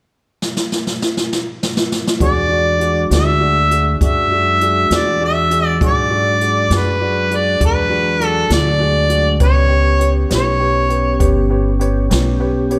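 A mellow, overdriven harmonica with slapback echo, light vibrato and scooped notes carries the solo melody up front in this soulful, rollicking slow blues in 12/8 at 67 BPM, cut from a longer piece in E mixolydian. A brushed jazz drum kit with a boomy kick opens with a fill at 0.4 seconds, and at 2.2 seconds the harmonica, a natural grand piano, a soft, flute-like tonewheel organ with key click, chorus vibrato and slow rotary speaker, and a woody pizzicato upright bass come in over an E9 chord that shifts to G at 9.4 seconds. Light reverb surrounds the mix, and the drums and harmonica sound distant and roomy.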